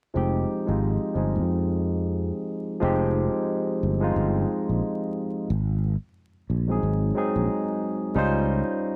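R&B with a neo-soul lean, this short cut from a longer piece moves at 90 BPM in 4/4 with a swung sixteenth-note feel, setting a sultry, introspective mood in F minor. A barky tine electric piano carries the accompaniment, bright and clean through a combo amp with a subtle chorus, sitting up front in its middle register. Beneath it, a sustaining fretless electric bass holds the low end from F1 to F2, growly and direct, placed just as close in the mix. The harmony settles on Fm9, shifts to Ab7 at 5.5 seconds and lands on Dbmaj9#11 at 8.1 seconds, with a new section arriving at 2.8 seconds. The sound is dry and close, like a 1970s studio session, with vinyl crackle adding a worn, intimate grain.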